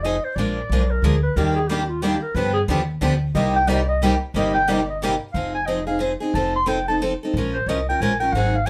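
A breathy clarinet with vibrato and scooped notes solos through this bittersweet, swinging excerpt of jazz manouche in 3/4 at 181 BPM, shifting from C minor to F minor at 5.3 seconds over a bright, up-front picked steel-string guitar, a boxy parlour guitar that joins from 1.4 to 5.1 seconds, and a woody, thumpy pizzicato upright bass in a moderate studio room.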